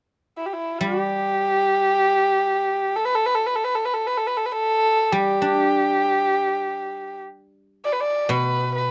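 A dry, close-sounding recording of a festive yet graceful Chinese traditional chamber piece, cut from a longer work. A single dark erhu carries the melody up front from 0.4 seconds, its soft attack, light vibrato, airy bow and sliding portamento giving it an intimate voice with a smooth top. A fingerpicked guzheng enters at 0.8 seconds, sitting lower in the mix with a ringing, silvery accompaniment.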